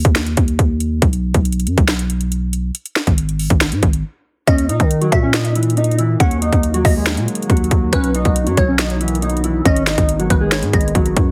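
Trap-flavored hip hop at 139 BPM in a half-time feel, this brooding, menacing excerpt sits in Eb phrygian and opens with a break of just the growling, buzzy 808-style bass and a trap kit of hard-clipped kick, sharp snare, metallic hi-hats and finger snaps, both up front. At 4.5 seconds a dark, clean electric guitar carrying the melody arrives, softened by analog chorus and a low-pass filter, joined by a glassy, crystalline wavetable pluck with chorus and delay as a second line, while at 5.8 seconds a deep, warbling ambient pad with chorus and built-in reverb adds sustained chords in the background over Ebm, B and Abm. The whole mix carries a heavily compressed, radio-like digital sheen.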